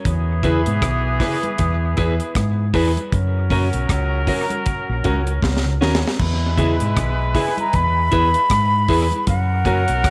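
With light reverb and tape echo on several parts, this hypnotic, laid-back roots reggae excerpt swings on a round, dark fingered dub bass up front and a dry drum kit with a high-tuned snare, tight kick and a fill at 5.4 seconds, while very quiet soft-handed congas, a clean electric guitar's accompaniment, a compressed second guitar's low arpeggios, background grand piano stabs and a vintage horn section with light vibrato carry the groove until an airy, close-miked concert flute takes the melody at 7.4 seconds.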